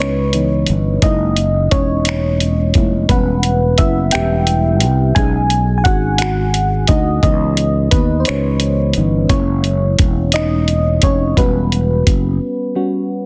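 Warm and intimate, this slow six-eight R&B excerpt moves at 58 BPM as a mellow FM electric piano takes the lead with a soft, round, chorused tone, voicing chords such as C#m9, F#7, Em6 and B69. Beneath it, a growly, punchy fretless electric bass sustains its notes, while a dusty, gritty sampler-style kit supplies finger snaps, hi-hat and a thumpy kick, with soft clipping on the snare. The dry, dense master keeps every part up front, and the bass and drums drop out by 12.4 seconds, leaving the piano alone in a brief break until 13.3 seconds.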